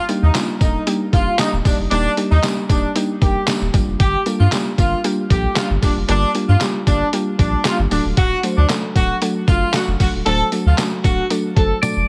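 Dance-pop with a confident, bittersweet mood, this short excerpt is cut from a longer piece and moves in a straight 4/4. A horn section carries the melody from the very start, punchy and loose with light vibrato, sounding distant and roomy yet up front, its notes touched by delay and sidechain pumping. Beneath it, a woody, mallet-like synth pluck with an FM, detuned character and chorus plays the accompaniment, while a deep, round sine sub bass holds the low end, both also pumping with the sidechain. A lo-fi, sampler-style drum kit, pitched down and muffled with a thumpy kick, fat snare, hi-hat, handclaps and toms, drives the groove, joined by a jingly tambourine in the background. The harmony shifts from Ebmaj7 to D at 7.9 seconds, and at 11.8 seconds a drum fill arrives as the horns drop out and a bright, twangy electric guitar note appears. The whole mix has light reverb and a heavily compressed, radio-like sound.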